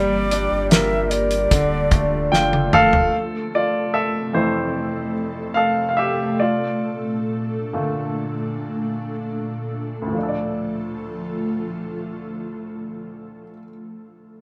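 Moderate room reverb gives a live-band feel to this emotional, melancholic D minor pop ballad excerpt at 58-76 BPM, where a clay alto ocarina sings a brief, distant vibrato melody while a very quiet fingerpicked nylon-string guitar, a deep sine sub bass and a dry, fat-snared 70s drum kit all fall away by 3.7 s, leaving the clear, polished baby grand piano to take a slowing solo from 3.1 s over an ethereal, detuned sawtooth pad with chorus.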